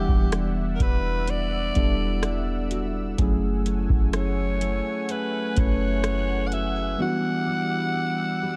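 Set in a digital ambience, this short, sensual late-night slice of contemporary R&B moves at a slow, straight 63 BPM over Em9 and F#m9 chords. A raspy, gritty alto saxophone with light vibrato carries the melody up front with delay, while muted, felt-like synth keys with chorus, a thick, airy unison pad and a fingerpicked nylon-string guitar with audible finger squeak sit beneath it. A booming analog drum machine with a deep kick, metallic hats and rim clicks drops out at 6.7 seconds, and a boomy 808-style bass stops at 7.0 seconds.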